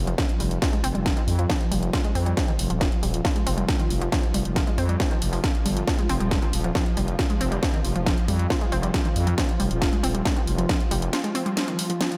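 A straight, driving 4/4 pulse anchors this relentless, hypnotic slice of peak-time techno, cut from a longer piece. A distorted, overdriven electronic kick sits up front, joined by a layered techno kit whose cracking snare and hi-hats carry overdrive, with the hats pumping against the sidechain. Beneath them, a growling, thick FM bass with a fast attack and sustained tone pumps in time and drops out at 11.1 seconds. A round, detuned analog pluck plays the riff with a bright filter snap, chorus and a diffuse ambient delay, while a swarming, nasal drone with a slow attack, granular texture and moving notch hovers tensely in the background. A lush hall reverb soaks the whole mix in a dreamy haze.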